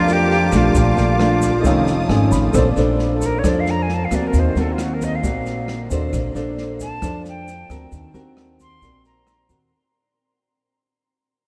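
A romantic, sophisticated bossa nova fragment opens with a dark, fingerpicked nylon-string guitar up front, a woody pizzicato upright bass, a soft-edged silver concert flute with vibrato, a very quiet, intimate grand piano with audible action noise, and a lush bowed string section in the background, joined almost at once by an open jazz drum kit with a boomy kick and rim clicks and a grainy egg shaker. After a brief piano fill, the strings stop at 2.5 seconds and the airy flute takes a solo over Bbmaj9 and Ebm6 chords as the music fades out, the piano dropping away at 6.2 seconds. A huge reverb places the music in a vast, echoing space.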